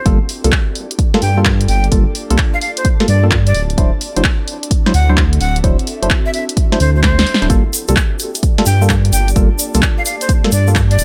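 Skippy and late-night, this swung two-step UK garage cut sets a breathy, bright jazz flute melody with digital delay over mellow, hollow organ stabs treated with chorus and phaser and two background pads (one soft and airy, one ethereal with ensemble chorus and reverb), both pumping like the deep, rumbling detuned saw bass, while an overdriven, up-front kick and a punchy analog drum machine of snare, handclaps and hi-hat carry the groove, with a drum fill at 7.0 seconds and a grainy egg shaker joining at 7.5 seconds as the chords move from Gm9 to D9 and back.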